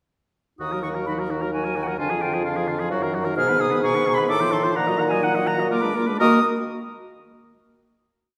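In a quick, straight 3/4 at 129 BPM, this short, complete classical-period movement for wind quintet in Eb minor sounds urgent and dramatic, with an airy, up-front silver concert flute carrying the melody with vibrato over the oboe's lightly vibrato second line, a distant clarinet and a punchy French horn playing rocking two-note figures and sustained chords, and a clear bassoon holding the bass, all from 0.6 seconds, moving from Ebm through Ddim/F and Bb7b9 to a final Ebm chord at 6.2 seconds that rings in a wet recital-hall reverb.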